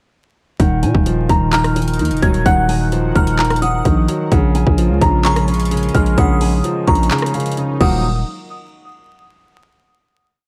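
At 0.6 seconds a dusky, thumb-plucked nylon-string guitar loop and a concert grand piano's repeating eighth-note arpeggio arrive over a growling 808-style bass, whose long sub-bass notes follow the kick and slide in pitch, while an evolving, chorused sawtooth pad sustains Ebmadd9 and Bbm7 chords in the background. This is eerie, hard-hitting trap in Eb minor at 129 BPM with a half-time feel; the up-front electronic kit pairs a hard-clipped kick with metallic hi-hats in fast rolls, handclaps, rim clicks and crash. At 1.5 seconds a crystalline FM synth bell adds a sparse, delayed counter-melody, the kick drops out just before the 8.0-second final hit, and the dry, gritty hardware sound carries vinyl crackle.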